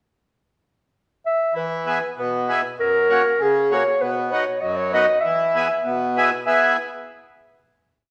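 In a straight 2/4 lilt, this short, jolly alpine folk piece features a dark, smooth-topped clarinet entering at 1.3 seconds with a classical-style solo melody built from motifs in balanced phrases, while a reedy, full accordion plays off-beat triad chords up front, the pair heard as a band playing live together in a stone room with a lingering reverb.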